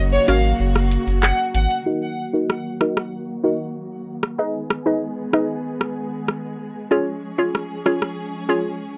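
Dancehall at 95 BPM in Eb minor, this bouncy, tough excerpt has a dry, gritty sound and moves from Gb through Ebm and Abm to Db. A studio string section holds soft, intimate sustained chords under a low-pass filter for the full 9.0 seconds, while a deep, mellow sub bass with an octave layer sits up front only until 1.7 s. A lush, bowed violin section carries a brief expressive melody with vibrato and tape echo in that same opening stretch, ending at 1.6 s. An electronic island pop kit of handclaps, metallic hi-hat, rim click and shaker drives with overdrive, its kick muted from 0.6 to 1.9 s. A hollow, warbling square-wave pluck, detuned and wave-folded with chorus and a low-pass filter, bounces through the accompaniment as a filter sweep runs from 1.9 s onward.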